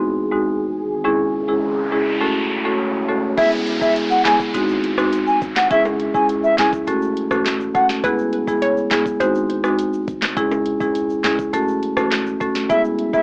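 An airy, bright baroque flute carries the melody over an up-front, woody marimba in this summery, bouncy dancehall clip at 103 BPM in E major, which opens on a deep, moody ambient pad under a filter sweep and an electronic noise sweep and downlifter before a knocking, sharp-snared afro-pop drum kit, a boomy 808-style bass and soft background tube shaker and timbales arrive at 3.4 seconds, with a hollow square pluck through analog delay adding a second line from 8.0 to 10.3 seconds, all captured with a lo-fi home-cassette, AM-radio sound.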